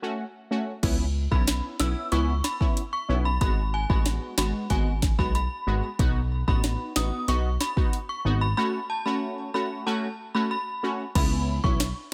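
Dancehall at 93 BPM in C# minor, this sultry, bouncy cut from a longer piece opens with a short break where a bright, brassy synth stab, detuned and treated with chorus and phaser, sounds alone over an F#m chord. At 0.8 seconds the electronic afro-pop drum kit arrives up front with a deep kick, sharp snare, metallic hi-hats and crash cymbal, joined by a punchy, funky analog bass whose filtered pluck decays in the low register. From 1.3 seconds a mellow FM synth chime carries the melody high above, its inharmonic, ringing tone warbling through ensemble chorus and digital delay with a vintage character. The harmony moves through C#m7, G#m7, B and back to F#m before returning to C#m7 at 11.2 seconds. A digital ambience surrounds the mix, while drums, bass and brass stabs stay forward and the chime sits softer behind them.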